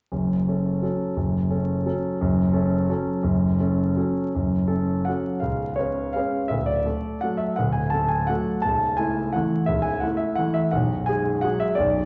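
Vinyl crackle sits over a dull, rolled-off top end, and a generous recital hall reverb of about 1.5 seconds gives the sense of a church or concert hall. This is a classical piano waltz in F# minor and 3/4, moving at 153-182 BPM with a free, rubato feel, its tuning set at A4 = 436 Hz. A single grand piano plays solo from start to finish, its tone polished and up front, ranging from deep bass at B0 up to A5. The mood is bittersweet and elegant, and the harmony moves from F# minor through C#7 and D toward A/C# and a G#m7b5/B near 10.7 seconds. The opening phrase gives way to a new section at 4.3 seconds, and the passage is cut from a longer piece.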